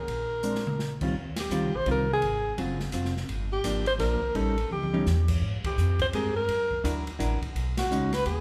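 A breathy, close-miked alto saxophone with light vibrato, subtone and scooped notes leads this swinging small-group jazz waltz at 169 BPM in 3/4, backed by woody pizzicato upright bass, a dark, clean hollow-body electric guitar in accompaniment, and an airy acoustic drum kit with dark cymbals and a boomy kick that plays fills at 0.4 and 4.7 s, while a wet large-studio reverb sets the band further back in this warm fragment of a longer piece.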